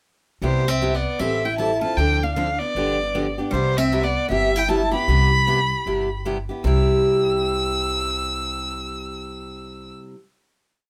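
A rich, bowed violin sits up front with a focused tone, a smooth top and vibrato, spinning a motif-based melody in period phrases across this short, swinging and charming jazz manouche piece in C major at 154 BPM. One bright, fresh-strung steel-string guitar adds a picked harmony line mostly in thirds. A full-bodied dreadnought picks four-to-the-bar rhythm with short accents on two and four over a woody, thumpy gut-string upright bass playing pizzicato root and fifth in two. A brief Cmaj7–Am7–Dm7–G7 passage gives way at 6.6 seconds to a final C chord in light reverb, with the rhythm guitar ringing on until 10.2 seconds.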